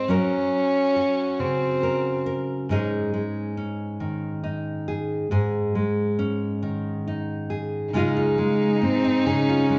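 A wet recital-hall reverb surrounds this short cut from a longer acoustic folk-pop ballad, which moves slowly at 46 BPM in a straight 6/8 in Db major with an intimate, hopeful mood. A full-bodied, fingerpicked nylon-string guitar sits up front as the accompaniment throughout, its fresh strings giving a deep classical tone over chords that move from Gb to Absus4. A dark violin carries a second line, played sul tasto with an airy bow, soft attack and light vibrato, close and up front; it plays at the opening, pauses at 2.3 seconds, and returns at 7.9 seconds as the music reaches a Dbadd9 and a new section begins. At 8.4 seconds a woody, boxy cello takes the melody with vibrato, bowed by one player and placed up front.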